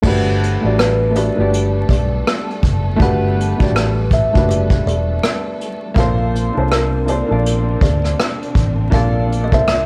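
Vinyl crackle frames this nostalgic, dreamy lo-fi hip hop excerpt, with the whole band entering together at 0.0 s over a lazy, swung sixteenth-note feel. A brushed drum kit sits up front in a small, roomy space, its punchy kick, hi-hat, rim click and crash cymbal softened by a rolled-off top, while a vintage foam-muted electric bass adds a round, amped low end. An intimate upright piano carries the accompaniment, mellow and slightly detuned, with audible action noise and a filtered, woody tone. The kalimba melody rings out with a hollow-box thumbnail pluck, its smooth sound dulled by a low-pass filter and trailed by tape echo. A lush bowed string section hangs distant in the background, filtered and expressive with vibrato and portamento, as the harmony moves from Gmaj9 to Bbmaj9 at 6.0 s, and a tape stop adds to the worn, studio-reverb haze.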